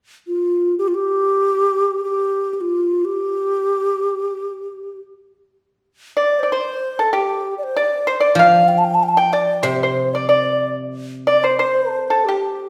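Graceful and pastoral, this short excerpt from a longer Chinese chamber piece floats in a free, rubato 2/4 as a pure, hollow bamboo xiao sings the melody up front with vibrato from 0.3 seconds, joined at 6.2 seconds by a dry, percussive pipa on a second line and briefly at 8.4 seconds by a ringing, silvery guzheng accompaniment low beneath, all set in a recital hall's lingering reverb.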